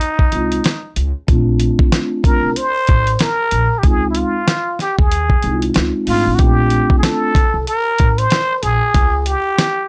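A swung sixteenth-note groove in four sets this cool jazz-hop excerpt in motion, carried by a sampler-style soul drum kit with a thumpy kick, fat snare and hi-hat, compressed and gritty with vintage 12-bit crunch and placed up front. From 0.3 seconds a pizzicato upright bass adds a woody, steel-string low end, while a vibraphone played with soft mallets and its motor off lays down a mellow, dark, ringing accompaniment until 7.3 seconds. Over the top, a close-miked trumpet with a plunger mute takes the solo melody, raspy and growling with a wah-wah colour, light vibrato, soft attacks and scooped notes. The harmony sways between Dbmaj9 and Bbmaj9 before landing on a Db5 near the close. The sound is dry and close, with the grainy character of a hardware recording bounced to cassette tape, giving the track a warm, lived-in feel.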